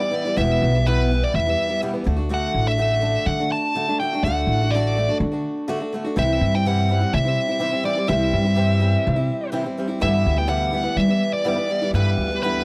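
A dry, close 1970s-style studio sound frames this hopeful folk rock and heartland rock passage in G major at 124 BPM, where a dark, smooth overdriven electric lead guitar carries the melody over a bright picked steel-string acoustic guitar with audible finger squeak, joined at 0.4 s by a woody, growly pizzicato upright bass sitting up front, as the chords move from Em through D and C to a closing G6 at 10.0 s.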